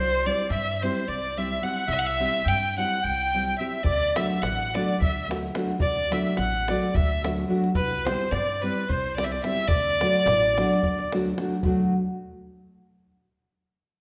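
A rich, bowed violin with smooth vibrato sits up front and carries the melody in this exuberant, wild Balkan wedding-band excerpt, moving in 7/8 at 215 BPM in D mixolydian, with a reedy single-reed accordion playing a clear second line in the same register. A fingerpicked nylon-string guitar with a deep classical tone gives up-front accompaniment, and a woody pizzicato upright bass anchors the low end as the harmony moves between C and D. A tight, dry davul enters in the background at 3.8 s, and the whole ensemble is bathed in the wet reverb of a recital hall.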